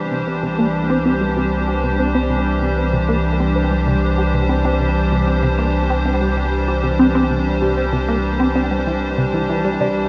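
Mysterious and expansive, this fragment of ambient, sequencer-driven space music sets a bright, morphing wavetable pad holding sustained chords up front, drenched in chorus and shimmer reverb, over a deep, round sub bass with tube saturation, while a tight, detuned sawtooth sequencer riff with filter pluck, phaser, 12-bit sampler grit and tape echo drives beneath, and a dark, shimmering pulse-width lead with vibrato slips in at 9.8 seconds, all suspended in a huge, wet reverberant space.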